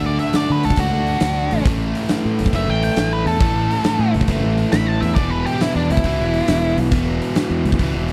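Blues rock power trio meets southern rock in this swaggering, gritty excerpt at 137 BPM in 4/4, swung on the eighths, moving from D to A5 and E5. A dark, picked octave-fuzz lead guitar solos over the top until 6.8 s, while a biting, double-tracked overdriven rhythm guitar sits up front with the riff and a growly, fuzzed fingered electric bass digs in beneath. A huge arena drum kit enters at 0.2 s with a punchy kick, medium-tuned snare and hi-hat in a pumping hall room, though the overall sound carries little reverb.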